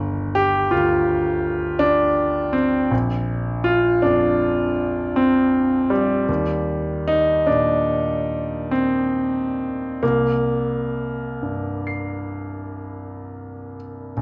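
A clear concert grand piano plays alone in this hazy, dreamy impressionist classical excerpt, moving in a rubato 9/8 at 42-56 BPM across a span from G1 to C7, its intimate, polished, up-front tone carrying deep bass, long sustain and audible action noise as it drifts from G5 through Bb and Ebmaj7 to C5, all set in a wet recital-hall reverb with a dark production.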